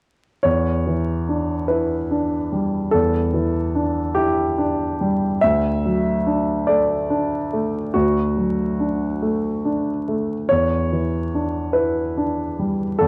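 A solo concert grand piano enters at 0.4 s with a deep-bassed, polished, up-front tone and short sustain, tinted by cassette tape and a moderate spring reverb amid vinyl crackle, drifting in a rubato 6/8 through Em7, D and back to Em7 in this melancholic, reflective fragment of neoclassical minimalist piano captured as a home recording.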